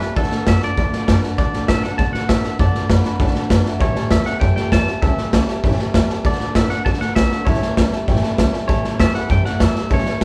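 Driven by a gritty, punchy garage drum kit up front, this rowdy, upbeat rockabilly excerpt at 197 BPM in D major sets a clean, twangy electric guitar melody over woody pizzicato upright bass, a bright picked dreadnought acoustic guitar and a brilliant upright piano that drops in a fill at 2.9 seconds, all played live in one room with moderate large studio reverb as the chords move between D and A7.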